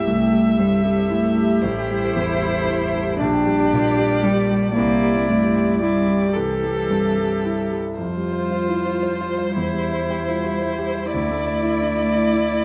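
Melancholic and longing, this short neoclassical passage for piano and strings moves in an unhurried, rubato 3/4 at 115 BPM, tuned to A4 = 444 Hz. A solo violin, muted and veiled with vibrato, carries the melody from a distance, while a single muted cello sings a second line beneath it and a lone viola adds soft, dark accompaniment. Up front, a clear concert grand piano provides open accompaniment reaching down into a deep bass, and a bright, ringing harp plays fingerpicked arpeggios in the background with a slapback echo until 11.1 seconds. At 8.0 seconds a lush, very quiet muted string section enters with sustained chords, as the harmony shifts from A minor colours toward Fsus2, C/E and Dsus2. The production is dry and dark, with little reverb and a soft, rounded top end.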